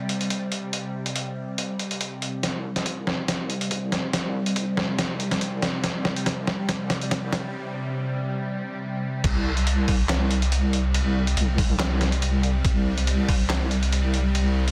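This deep dubstep excerpt moves at 141 BPM in a half-time feel with a light swing, and its mood is meditative and dark. A bright, string-like drone opens the piece, sustaining tense detuned sawtooth chords with a slow attack, a noise layer, vibrato, phaser and its own reverb. A gritty, tape-warm trip hop drum kit joins almost at once, playing crash and ride cymbals, handclaps, hi-hat and a medium-tuned snare with a compressed, pitched-down sampler character, re-recorded in a small room. At 2.4 seconds a deep, soft wobble bass arrives up front with a thumpy electronic kick. A drum fill runs until 7.5 seconds, and a filter sweep on the drone builds the tension until the drop at 9.2 seconds. The bass blends square and sine tones, detuned and sustained with chorus and a fast attack, while the kick drops out at 13.4 seconds. The mix has light reverb and a dense, heavily limited modern master.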